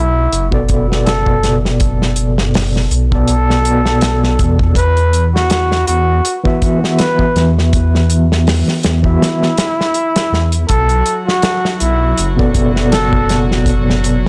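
A bucket-muted trumpet opens this smoky, cinematic trip hop excerpt in B minor, its veiled, breathy, whispered melody carrying light vibrato and scooped notes, roughened by 12-bit sampler grit and tape echo. Beneath it from the start, a dark detuned saw bass rumbles and beats with tube saturation. Within the first second, a soul drum kit with a tight kick, medium-tuned snare and hi-hat sits up front at a relaxed 81 BPM in 4/4 with a light swing, its snare softly clipped. Alongside it, a barky, overdriven tine electric piano played through a combo amp adds fast tremolo and tape echo while the chords move from Bm7 to Esus2 and back. At 10.7 seconds, a distant chamber string section enters with sustained, bowed chords of reedy gut-string tone, tinged with the same sampler grit. The whole mix has a blown-out, overdriven sound with studio reverb.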